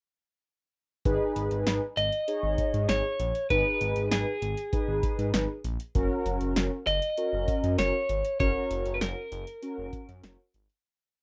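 A straight 4/4 synth-pop groove at 98 BPM in G# minor sets a melancholic, nocturnal mood, as an electro analog drum machine with a deep kick, punchy snare and metallic hats joins a smooth, detuned sawtooth synth bass and round, chorused synth brass pushing close-voiced chords from 1.1 seconds, while a dark, slightly broken-up lead guitar enters at 2.0 seconds with song-like motifs over a move from G#m to F#, all in a rough home-demo mix with light reverb that fades out from 8.4 seconds.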